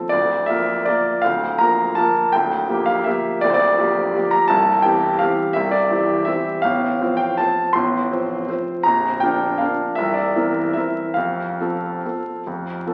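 A classical piano waltz in 3/4, this short extract from a longer piece moves with a graceful, playful rubato that lets the lilting pulse stretch and give. A solo grand piano carries everything from 0.0 to 12.9 seconds, its clear, intimate tone sitting up front with audible action noise and a long, natural sustain, reaching from the deep bass of A0 up to C6. The harmony drifts through Bb/D, Gm7/D and C before settling on F/A, then gathers toward a cadence as Bb and C7 resolve onto F at 11.2 seconds. A wet recital hall reverb surrounds the instrument, while the sound of a very old 78 rpm record adds a veil of vinyl crackle that lends the performance an antique, nostalgic patina.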